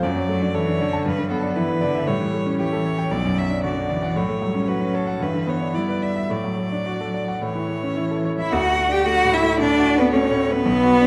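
Cheerful and lively, this quick classical-period movement for piano trio unfolds in 4/4 with a rubato feel, cut from a longer piece. A rich, focused bowed violin with vibrato carries the melody, while a clear, smooth cello sits close and even beneath it as a second line, and a bright concert grand piano with brilliant tone and deep bass sits up front as accompaniment. The dark production is set in a wet recital hall, with the harmony moving through minor and seventh chords before a new section begins on D at 8.5 seconds.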